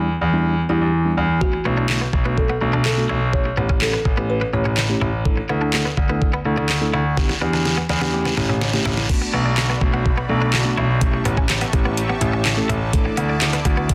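A straight 4/4 dance-pop groove at 125 BPM in B minor drives this energetic, confident clip from a longer piece. The smooth R&B drum kit enters at 1.4 seconds, up front with a knocking kick, deep snare, metallic hi-hat, handclaps and crash cymbal in a produced, tape-warm electronic sound, and a drum fill runs from 7.2 to 9.1 seconds. Underneath from the start, a bright concert grand piano plays the bass line in a low register with brilliant, polished tone and short sustain, while a mellow tine electric piano supplies clean accompaniment that seems heard through built-in speakers, both breathing with sidechain pumping. A woody folk marimba with soft mallets carries a short, rustic, round melody with delay between 0.7 and 5.0 seconds, and a twangy, compressed twelve-string electric guitar picks a riff with subtle chorus through the rest of the clip. At 9.1 seconds the music moves into a new section as a soft, detuned supersaw adds sustained chords with sidechain pumping in the background. 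The chords cycle through Em7, Bm7, A7 and Dsus2 under light reverb, and the master is dense and heavily limited in a modern style.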